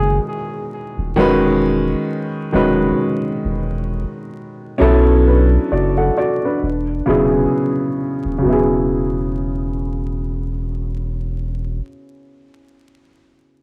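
A home cassette recording with vinyl crackle and a moderate spring reverb carries this dreamy, nostalgic lo-fi hip hop excerpt in E major at 66 BPM with a swung feel, where a woody, vintage upright piano with short sustain, run through tape and a low-pass filter and given a filter sweep from 1.2 to 8.4 seconds, plays accompaniment over Emaj7, B5, E69 and E chords until 13.6 seconds, while a deep, round dub sub bass with a fast attack sits up front until 11.8 seconds.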